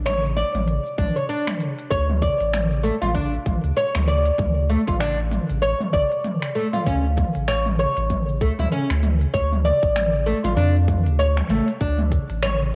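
An up-front, woody oud plays plectrum-plucked arpeggios in D harmonic minor through cassette tape and analog delay, over a deep, round sine sub bass with sidechain pumping, an overdriven organic electronic kit of finger snaps, smooth hats, shaker and toms, and a tight, tape-warm electronic kick entering at 1.0 seconds, giving this earthy, mystical organic downtempo excerpt at 97 BPM a swung, home-recorded cassette feel in spring reverb.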